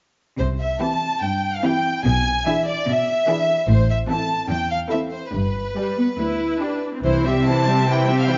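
A brisk 145 BPM pulse in 4/4 drives this quick classical-period movement for string orchestra, though the time bends with a rubato feel that keeps the spirited, lively mood supple. In C major, the harmony moves from C through E7/B and Am to G before settling back on C at 7.0 seconds. The first violins carry the melody up front with a soft-edged, intimate sul tasto tone and light vibrato, while a second violin section adds a smooth, even line beneath. Violas fill in the accompaniment with a lush, focused sound that sits close, and the cellos give a clear yet intense bass from further back, joined by a double bass section whose tone stays rounded and focused until it drops out at 7.4 seconds. Moderate recital-hall reverb gives the ensemble a gentle space, and the top end is kept soft, as this brief passage is cut from a longer piece.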